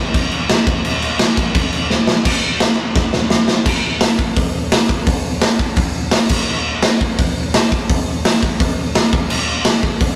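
A rough, dry rehearsal-room recording captures a rowdy, rebellious punk cut in straight 4/4, where an up-front, gritty acoustic kit with a punchy kick, medium-tuned snare, hi-hat and crash cymbal pumps in a bright stone room with a rolled-off top, breaking into fills at 1.9 and 3.0 seconds before pressing on to the end.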